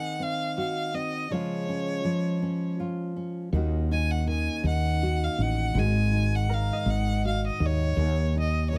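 This folk excerpt moves in a slow, straight 6/8 at 54 dotted-quarter beats per minute, its reflective, heartbroken mood set in Eb dorian. A clear, focused solo violin carries the melody with bowed vibrato, sitting in its upper-middle register above a warm, full-bodied nylon-string guitar that is fingerpicked and up front, giving a deep classical foundation. A mellow concert harp rings out very quietly in its arpeggios, heard at the opening and again from 6.5 seconds. At 3.5 seconds a woody fretless electric bass arrives, dark, growly and round, with a hollow-body, amped directness that places it prominently in the mix. The harmony drifts from Ab7 through Db and Ebm7 toward bare open fifths, and the close, detailed microphones with little reverb keep every string intimate and near.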